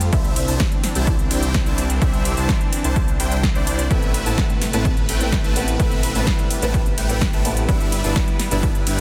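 A bright, phased supersaw pad sits in the background with a thick, chorused detuned saw bass, both pumping to the sidechain, as an overdriven big-room drum kit of crisp hats, ride and snare opens this triumphant, uplifting festival progressive house cut at 127 BPM in C major, joined by a punchy, up-front electronic kick. Huge, lush supersaw chords carry the riff through phaser, sidechain pumping and dub echo as the harmony moves from Cadd9 through Amadd9 to G6. At 3.9 seconds a dark, boxy fingerpicked old ladder-braced acoustic guitar enters, tucked behind the synths with its own pumping and dub echo, all held in a dry, dense, heavily limited modern master.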